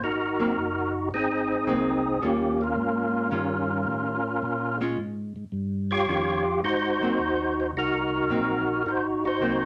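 A fat, lightly overdriven tonewheel organ carries the melody up front from the start, its percussive third-harmonic attack and key click colored by chorus vibrato and a slow rotary speaker, above a mellow, round, dark organ bass that is also treated with chorus vibrato and slow rotary, while a clean, picked hollow-body archtop guitar joins at 0.4 seconds to accompany through Ab9, Eb9 and Bbm7 chords in this greasy, bluesy soul jazz organ trio fragment, swinging at 108 BPM in 4/4 inside a wet studio reverb.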